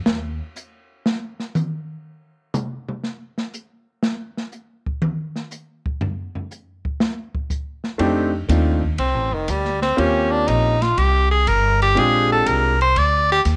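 After a brief opening note from a woody pizzicato upright bass, a dark, smooth jazz drum kit carries this swinging, sophisticated small-group swing and bop excerpt at 121 BPM, taking a solo on its dark cymbals, medium-tuned snare and boomy kick until 8.0 seconds. At that point the upright bass returns and a clear, natural concert grand piano enters over F13, Eb13 and Bb13 harmony. At 9.0 seconds an edgy, forceful tenor saxophone joins up front, its punchy tone marked by vibrato and scooped notes, all set in light studio reverb.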